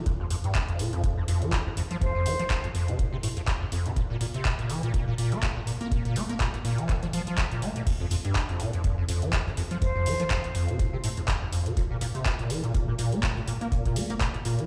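Trippy and raw, this acid house excerpt in F major runs at 123 BPM with a swung 4/4 feel, driven by a rubbery, saturated square-wave acid bass riff with overdrive, chorus, delay and sidechain pumping. Beneath it sit a dry, deep electronic kick and a booming analog drum machine with metallic hats, handclaps and crash. An airy, expressive jazz flute with vibrato and digital delay appears briefly at 2.0 and 9.8 seconds. A very quiet brushed vintage kit joins at 7.9 seconds, all set in a large, reverberant room.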